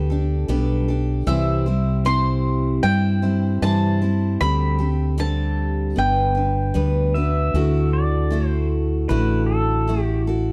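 Acoustic folk at an unhurried 77 BPM in 4/4 with a hopeful mood opens with a mellow, woody mandolin carrying the melody over a bright, full-bodied picked steel-string acoustic guitar with audible finger squeak and a round, dark fretless electric bass sitting up front. At 7.1 s the mandolin stops and a twangy, compressed pedal steel guitar enters, played with fingerpicks and slide, its volume swells leading a short solo as the chords move from Gadd9 through C, D7sus4 and Gmaj7 to Dadd9. The sound is a dry, close 1970s-style studio recording with light reverb, cut from a longer piece.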